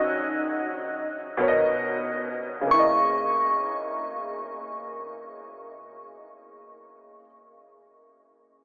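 A glassy, crystalline synth bell carries the melody with chorus and analog delay over a dark, mellow grand piano accompaniment with analog chorus, drifting in free time through a sensual, moody R&B fragment whose dreamy, reverb-soaked mix has a telephone-like tone, the bell ending at 7.2 seconds while the piano lingers until 8.6 seconds.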